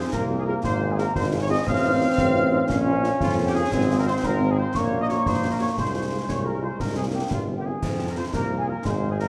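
A stern, martial military-style march for wind band in F minor, moving at 117 BPM in a straight 6/8, with a clear trumpet section carrying the melody over tight, sustained trombone chords, a distant, roomy tuba on the bass, and a very quiet, close-miked French horn section filling in the accompaniment. An airy large flute ensemble with rolled-off highs adds a second line in the background, while concert snare, bass drum and dark clash cymbals drive the march, and a warm, very quiet solo euphonium briefly joins with its own line from 6.3 to 7.7 seconds. The chords travel from Fm through Bbm and Gb/Bb to a C chord before landing on F5, all within a wet scoring-stage reverb in this short cut from a longer piece.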